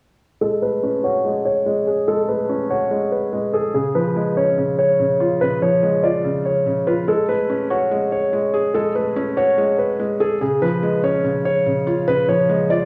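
A dark grand piano and a felt-muted upright piano enter together at 0.4 s, setting a menacing, brooding mood for this fragment of a longer trap piece at 144 BPM in a half-time feel. The grand piano carries the melody in a mellow, shadowy tone with audible action noise, placed up front and colored by a low-pass filter, cassette tape character and analog delay. Beneath it, the upright piano plays accompaniment in a lower register, soft and muted by felt, with a natural, intimate sound and its own mechanical noise. The harmony in F# harmonic minor moves between F#madd9 and C#, with a filter sweep running across the passage until both instruments stop at 12.9 s. A wet spring reverb and the character of a home cassette recording give the whole passage a close-up atmosphere.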